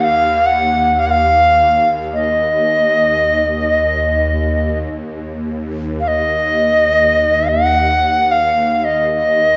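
A cedar flute and an evolving wavetable pad sound together from the very start of this brief, spacious piece of world meditation music, which unfolds in free time and is cut from a longer work. The flute carries the melody up front within a narrow upper range, its tone airy, reedy and woody, with a soft attack and vibrato. Beneath it, the pad holds a low drone at a much lower level, a detuned, sine-based sound that morphs as it evolves, with a gradual attack, a long release, ensemble chorus and its own built-in reverb. A lush hall reverb and a hint of small-room ambience surround the performance, lending it a meditative, open feel. The recording has the character of a worn cassette, with warbling pitch drift and a muffled top end, and both parts sustain through to the cut at 9.6 seconds.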